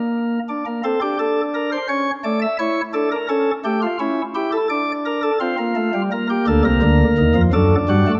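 A chamber organ opens at once on light, bright flute stops, the chiff of each pipe's onset sitting up front in the sound. This is a short baroque-style fugue in three parts, cut from a longer piece, with a mood that is contemplative yet driving over a steady, straight four-beat metre. The organ plays alone throughout, spanning C2 to E5, and its chamber voicing gives the lines a sparkling, intimate character. The harmony moves from D5 through A, A7, Dm and Gm before landing on D/F# near the close. A wet concert hall reverb with a decay of about 1.8 seconds surrounds the instrument, lending the counterpoint a spacious glow until the passage breaks off at 8.2 seconds.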